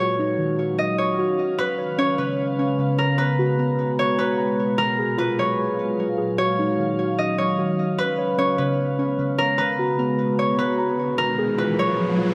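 A fingerpicked concert harp rings up front with a melody over a glassy, ethereal FM pad of sustained chords and muted, felt-like synth keys playing soft arpeggios through chorus and delay, in this spacious, hazy half-time hip hop excerpt at 150 BPM in G# dorian, moving through D#m9, C#7, G#m9 and F#maj9 in a lush hall reverb, with an electronic riser entering in the background at 11.0 seconds.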